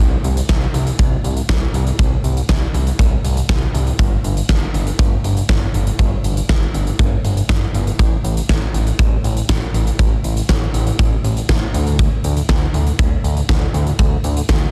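A dry, dense and heavily limited modern master frames this bright, wistful synth-pop excerpt at 120 BPM in a straight 4/4. A thick, nasal analog bass of detuned sawtooth and square waves holds sustained low notes with a fast attack from the very start to 14.7 s. An up-front, arena-sized acoustic drum kit enters at 0.2 s with a punchy kick, fat snare and hi-hat ringing in a big room.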